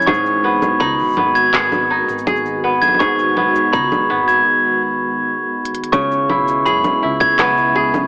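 Opening at once with a bell-like glockenspiel line struck with hard plastic mallets and touched by tape echo, a bright, ringing kora arpeggio dusted with vintage 12-bit sampler grit, a warbly, detuned sawtooth-and-triangle pad in chorus, and a crisp organic electronic kit of cabasa, congas, handclaps and hi-hat, this autumnal, intimate folktronica fragment in C# minor at 82 BPM soon gains a woody pizzicato upright bass and a tight electronic kick, then moves from G#m7 to C#m7 at 5.9 seconds after a break from 4.5 seconds capped by a drum fill, the mix carrying an AM radio sound and a moderate echo chamber reverb.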